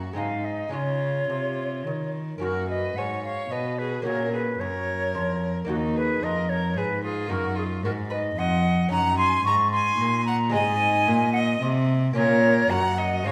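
Serene, flowing baroque-style classical sonata movement in 3/4, in which a hollow, vibrato-laden concert flute carries the melody up front from 0.2 seconds over a rich, portamento-inflected violin second line, a delicate fingerpicked gut-string lute accompaniment and an intimate, close cello bass played sul tasto with an airy bow, all set in a wet recital hall reverb in this excerpt from a longer piece.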